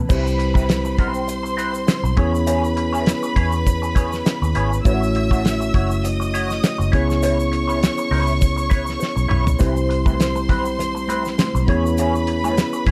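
Heard in a small, intimate room, this smooth, lush 1970s-style soul excerpt opens with a mellow tine electric piano laying down chords beside a dark, round, foam-muted fingered bass, while a damped drum kit with a fat snare and tight kick sits up front. A rich, bowed violin section with vibrato carries a high second line, a slightly broken-up, lo-fi electric guitar through wah picks out a riff, and a grainy egg shaker ticks in the background. After a drum fill at 9.0 seconds, very quiet, ringing congas join at 9.6 seconds as the chords move back to Cmaj7.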